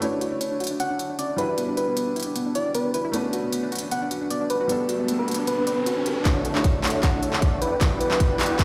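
Heard through a big sound system in a bare stone room with lush hall reverb, this bright future bass excerpt pairs a worn grand piano with a dark, round pluck playing arpeggios, both pumping with sidechain and trailed by digital delay, over a crisp big-room kit of handclaps and hi-hats; a gentle, keys-like FM lead carries the melody from 0.8 seconds, a riser sounds ahead of the build-up, and at 6.3 seconds a huge, detuned supersaw riff under a filter sweep arrives with a very quiet fat analog bass, a drum fill and a hard-clipped electronic kick up front.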